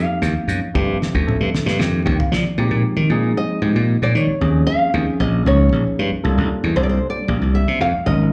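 A dark, woody, fingerpicked nylon-string guitar melody with slapback and tape echo opens this driving, intense electric jazz fusion excerpt in 7/8 at 230 BPM in Bb dorian, over a worn, slightly out-of-tune, lightly overdriven tine electric piano and a growly, punchy slap bass up front, while a dry, fat-snared 70s drum kit plays only from 0.2 to 2.5 seconds with a fill as the piano adds its own, before the harmony shifts at 2.6 seconds from F9sus4, G9sus4 and F13 to Bb13sus4, Eb13sus4 and C13sus4, the whole heard as a live gig through the venue's PA and club reverb.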